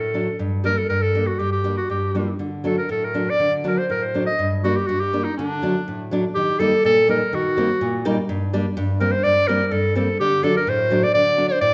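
A clear, smooth-topped clarinet carries the melody in a classical style, sitting up front as the solo voice and ranging from D4 to Eb5. This is a bittersweet, soulful klezmer piece in D phrygian dominant, moving in a straight 2/4 at 123 BPM and speeding up as it goes. A full-bodied nylon-string guitar accompanies throughout, fingerpicked in a deep classical manner, with audible finger squeak adding intimacy. Both parts play together from start to finish, cut from a longer piece. The harmony circles between Gm and D in the first section, then shifts to Eb at 6.4 seconds before returning through Gm and D. A recital hall reverb wraps the pair in a lingering, resonant space.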